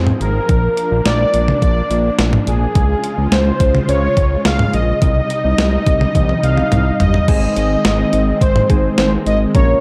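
Dark, lightly reverberant production gives this short synth-pop excerpt a nocturnal, cool mood at 106 BPM in a straight 4/4. Up front, a fat analog bass with a detuned, saturated sawtooth tone holds the low end, while a clean 12-bit digital drum machine, sampler-style with a thumpy kick, medium-tuned snare, hi-hat, crash and toms, sounds tape-warm and re-recorded in a large room. The melody belongs to a bold, nasal analog synth brass with a filter sweep, vibrato, chorus and slapback echo. Behind it, a vintage string machine voiced as violas sustains slow-attack chords through an ensemble chorus over a progression of Bb, Db, Cm and Ab. A drum fill runs from 6.2 to 7.3 seconds, and at 7.3 seconds soft, round electric-piano-like synth keys enter with a decaying, ring-modulated triangle and sine tone and a sub octave.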